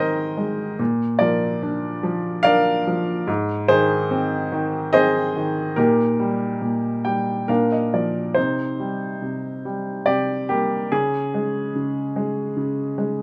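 A lyrical classical solo piano excerpt in 3/4, reflective and melancholic, with a rubato feel that lets the phrases breathe. A clear upright piano plays alone from 0.0 to 13.2 seconds, its woody, polished tone sitting up front, ranging from Ab2 to G5 over chords that drift from Abadd9 and Bb through Eb/Bb before a fill at 6.6 seconds leads into a darker passage on Cm and Db5. Close, detailed microphones and light reverb keep every note present and intimate.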